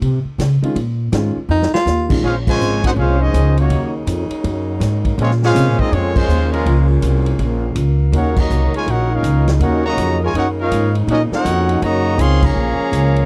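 Sultry and brassy, this big band swing fragment in Bb minor moves at 163 BPM with a swing feel on the eighth notes, cut from a longer piece. A woody, pizzicato upright bass sits up front throughout, joined by a vintage drum kit with a punchy kick, medium-tuned snare and rolled-off cymbals, which plays a short fill at 1.5 seconds. In the opening moments a concert grand piano with audible action noise and a deep low end comps briefly, while a tenor saxophone with scooped notes and a smooth top takes a short solo. At 2.2 seconds the full band arrives: a trumpet section with light vibrato and a soft attack carries the melody up front, a trombone section plays a second line in the background, and a saxophone section holds sustained chords beneath them. Band accents punctuate the passage at 2.4, 6.1, 8.3 and 12.4 seconds, all captured in a dry, close 1970s-style studio sound with little reverb.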